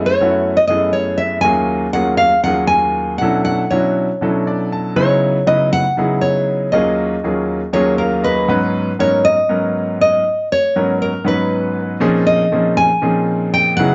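Funky and driving, this jazz excerpt in an odd 7/8 metre sets a fingerpicked nylon-string guitar melody, deep and classical with audible finger squeak and a slapback echo, up front against a brilliant baby grand piano accompaniment with long sustain, which adds fills at 4.2 and 7.7 seconds, the second leading into a shift of mode at 8.5 seconds, all in a moderate studio reverb with rolled-off highs.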